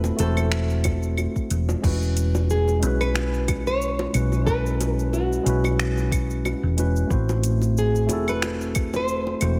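A lightly swung groove of finger snaps, claves, shaker, metallic hats and crash from an overdriven electronic R&B kit sets a relaxed, sunny sunset-chillout mood, with very quiet, low-tuned bongos beneath and a soft, overdriven electronic kick entering at 0.8 s and dropping out at 8.9 s. An up-front, dark, round hollow-body electric bass anchors the low end while a mellow, clean tine electric piano with delay and slapback echo voices the chords, moving from Am6 to E69 and back to Am6 at 7.1 s. On top, a full-bodied, fingerpicked nylon-string guitar carries the melody with audible finger squeak and tape echo, all set in a lush hall reverb that gives this brief cut from a longer piece a big arena sound.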